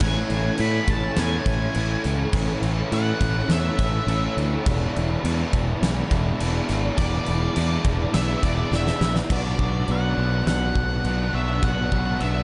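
A growling, bright overdriven bass sits up front in this blissful, wistful shoegaze and dream pop rock excerpt at 103 BPM in E mixolydian, joined by a huge arena drum kit with a fat snare, punchy kick and crash cymbal, two picked overdriven electric guitars playing riffs (one in the background with ensemble chorus, the other compressed with reverse reverb), and an octave-fuzz lead guitar carrying the melody through distortion and delay, in a dreamy mix soaked in huge ambient reverb, where a drum fill at 8.7 s leads from Amaj7 and E7 to Bm at 9.3 s.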